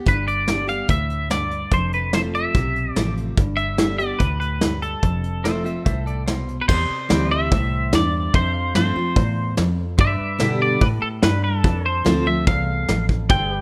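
A twangy, up-front electric guitar carries the melody through analog chorus in this sunny, nostalgic honky-tonk and classic country excerpt at 145 BPM, over a bright picked dreadnought acoustic guitar, a dark, foam-muted fingered bass and a roomy, distant brush kit with a punchy kick, while a pedal steel adds a brief second line at 5.4 seconds and returns at 7.1 seconds with warm sustained chords in the background, all in a rough home-demo mix with light small-room reverb.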